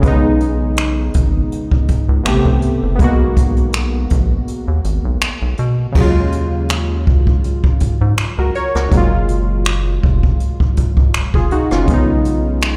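Little reverb sits on the parts, yet a large studio reverb, as if from a big sound system in a bare room, surrounds this moody, longing contemporary R&B piece in Eb minor at 81 BPM with a light 16th-note swing. Round, detuned analog keys with chorus carry chords from B69 through Am9 and Abm9 to Ebm11 and Gbmaj9, over a rubbery, nasal square-wave bass. Alongside them, a brushed jazz kit sounds distant and roomy, with dark cymbals, a punchy kick, finger snaps and rim clicks. A break at 4.5 s leads into a new section at 6.0 s.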